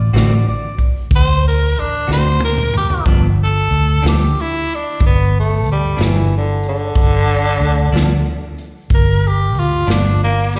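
Slow blues in a straight 12/8 with a rollicking, swaggering mood, heard as a live gig through a venue's sound system with recital-hall reverb, cut from a longer piece. A close-miked harmonica flashes a brief scooped note at the start as a round, foam-muted bass sits up front, a clean picked electric guitar shimmers with harmonic tremolo and slapback echo, and a natural acoustic kit with a punchy kick rolls into a drum fill from 2.1 seconds. A raspy, growling tenor saxophone enters at 1.2 seconds and takes a gritty, vibrato-laden jazz-style solo from 3.1 seconds as the harmony moves from D7 to G7.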